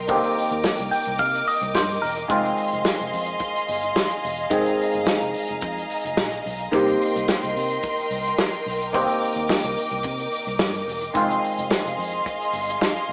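A phaser-treated clav comps through this glamorous, sultry disco excerpt, its percussive, stringy attack sitting clean and up front, with a fill from 0.6 to 2.3 seconds. Alongside it, a lush studio string section holds sustained chords with smooth vibrato, moving between Cm7 and Fm7 in C minor at 108 BPM in a straight 4/4. A soul drum kit of hi-hat, kick and medium-tuned snare sounds tight yet roomy, its top rolled off. Lower in the mix, a dark, foam-muted fingered electric bass adds a round, punchy low end, while a grainy tube shaker ticks very quietly in the background. The band plays live in one room with a wet reverb, and the whole take carries the sound of AM radio.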